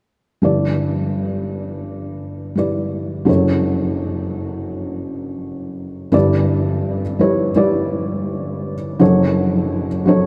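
Tender and heartfelt, this short folk excerpt at 84 BPM in 4/4 features a lone felt-muted upright piano, its soft, mellow tone intimate and up front, with audible action noise and a short sustain. The piano sits in a vast, echoing space bathed in wet cathedral reverb, and its chords move between G6 and Dmaj7/F#, with a second section beginning at 6.1 seconds. Tuned slightly low to A4 = 437 Hz, the piece is heard from 0.4 to 10.3 seconds, cut from a longer work.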